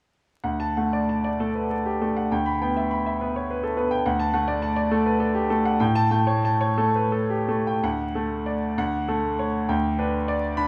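Through vinyl crackle and a moderate recital-hall reverb, a clear, smooth grand piano with a vintage tone and long sustain sits up front in this lyrical, warm romantic character piece for solo piano, played with rubato in 6/8 from 0.4 s to 10.7 s, with a new section beginning at 7.8 s in this short cut from a longer piece.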